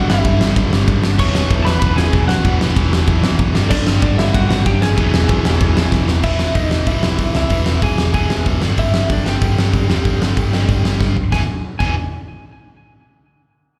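Rebellious and energetic, this punk rock clip, cut from a longer piece and heard as a live gig through a club PA, pairs a dark, slightly broken-up lead guitar melody carrying slapback echo and delay with a bright, overdriven, double-tracked riff guitar. A compressed fuzz guitar adds its own riff in the background until 6.2 seconds, while a round, hollow-body picked bass anchors the low end. Up front, a big acoustic rock kit with a fat snare and punchy kick drives the groove across the shifts between G5 and E, with a drum fill at 5.9 seconds.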